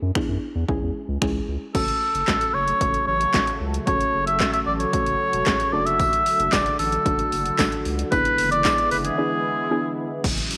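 A straight 4/4 pulse at 113 BPM from a punchy, tape-tinged analog drum machine drives this bittersweet dance-pop piece in F# minor, where a thick saturated sub bass, a soft round pluck and a bright, resonant sweeping pad all three carry sidechain pumping, while a mellow oboe with slapback echo sings the melody from 1.7 s, a very quiet jingly tambourine slips in at 6.0 s, and a downlifter arrives at 10.2 s after the break, all inside a moderate echo-chamber reverb.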